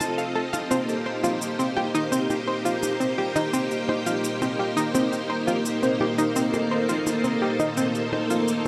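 A straight 4/4 pulse of electronic percussion blips and cabasa, tape-echoed and sitting low in the mix, carries this short cut from a longer piece of cosmic, expansive, sequencer-driven space music. A round, bright analog pluck with a sub octave and a snappy filtered attack plays a chorused riff through tape echo, while a lush, vintage string machine holds sustained chords up front, moving from F7 to Cm7 at 0.7 seconds. An enormous ambient reverb washes over the sound, stretching it into a deep, floating space.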